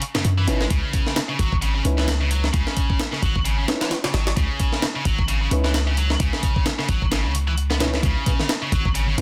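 Funky and gritty, this short breakbeat cut rides a swung groove that sits on a single C#m7 chord throughout. A sampler-style drum kit opens at 0.0 seconds, its pitched-up, compressed sound built on a thumpy kick, a high-tuned snare and hi-hat, placed up front with a tape-warm edge. A deep, boomy 808-style bass with a sine tone and fast attack joins almost at once, each note decaying in a mellow way just as prominent as the drums. A scooped high-gain guitar plays a bright, double-tracked, picked riff soaked in distortion and tube saturation with dub echo, while a dark, vintage-sounding concert grand piano adds short, smooth stabs that also carry dub echo. Congas with soft hands and a saturated acoustic tone slip in at 8.0 seconds, sitting in the background of a dry, dense and heavily limited mix.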